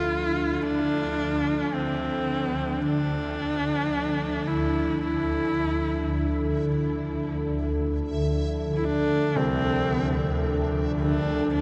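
A husky, up-front horsehead fiddle opens this dark, unsettling ambient drone fragment alongside a deep pad, a swarming drone and a concert grand piano, all sounding from the very start. The bowed fiddle carries the melody in a narrow middle range. Its clear, boxy tone is shaded with vibrato and portamento and trailed by a diffuse ambient delay. Around it the pad holds sustained chords with a moody, detuned, wave-folded and ring-modulated character softened by chorus, while the tense, granular drone churns in the low register. In the background the mellow piano plays low arpeggios through its own diffuse delay, and from 2.6 seconds a faint, reversed, bright granular texture fades in behind the rest. Cut from a longer piece, the fragment hangs in a huge, wet reverb with a long tail and a dulled top end.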